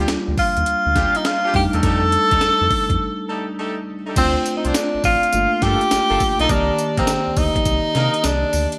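Bouncy and flirty, this short new jack swing R&B excerpt cut from a longer piece rides a swung groove where a vibrato-laced, roomy tenor saxophone carries the melody over mellow tine electric piano chords, light-vibrato horn stabs with octave doubling, a deep, round analog bass and a gritty, compressed breakbeat sampler-style drum kit with a thumpy kick, high-tuned snare, hi-hat, crash and tambourine treated with gated reverb, all framed by bright 1980s-style digital production with a faint mains hum and a break from 3.0 to 4.2 seconds.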